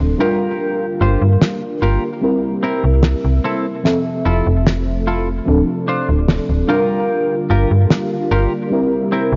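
This dreamy, faded vaporwave fragment at 74 BPM opens on a round FM electric piano with analog chorus and delay, a silky string machine drifting through phaser and ensemble chorus, and an up-front, snappy FM bass with a metallic attack, while a bright, clean semi-hollow guitar riff joins at 0.2 seconds. A dry, fat acoustic snare enters at 1.4 seconds over a gentle cycle of Gm7, C7, Fmaj7 and Dm7. Light reverb and worn cassette tape with warbly pitch drift leave the whole sound dulled and hazy.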